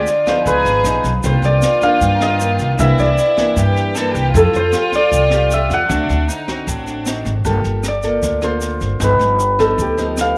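Moderate spring reverb and small-room ambience frame this wistful, intimate bossa nova excerpt in G minor at 154 BPM: an up-front, thumb-plucked concert harp carries a ringing melody through tape echo and takes a solo from 7.5 seconds over chords such as Cm9, Fmaj9, D7b9 and Gm9, while a close, sul tasto chamber violin section with light vibrato plays a soft-attack second line until 7.3 seconds, a bright, fingerpicked nylon-string guitar with audible finger squeak accompanies, a long-sustain baby grand piano sits in the background (dropping out at 3.1 seconds and returning at 7.5), a woody pizzicato upright bass anchors the low end up front, a jazz brush kit with a boomy kick, high-tuned snare and rim clicks stays behind, and a grainy, dry egg shaker plays throughout.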